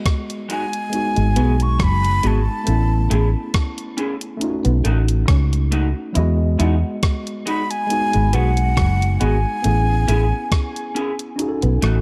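A lightly swung 16th-note groove at 69 BPM from a crisp, thumpy 8-bit drum machine with hi-hat, kick and rim click drives this sweet, tender lovers rock reggae fragment in E major, where a round, foam-muted fingered bass sits up front beneath a worn, slightly out-of-tune tine electric piano with gentle overdrive, guitar stabs through a small, slightly broken-up amp with lush chorus, and a picked, compressed guitar riff in the background, while a breathy jazz flute with vibrato and tape echo carries the melody from 0.5 to 10.9 s in a dark, lightly reverberant mix.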